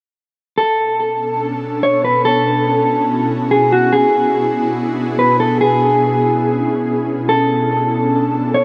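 Melancholic and hazy, this hip hop excerpt moves at 143 BPM in 4/4 with a half-time feel in B dorian, cut from a longer piece. A dark, clean electric guitar carries the melody from 0.6 seconds through a digital delay, and an ethereal, airy pad with a detuned sawtooth edge and a noise layer joins at 1.1 seconds with sustained chords, thickened by ensemble chorus. A huge ambient reverb wraps the recording as the harmony drifts from Bm9 through B9sus4, E9/B and E6/B before settling back on Bm9.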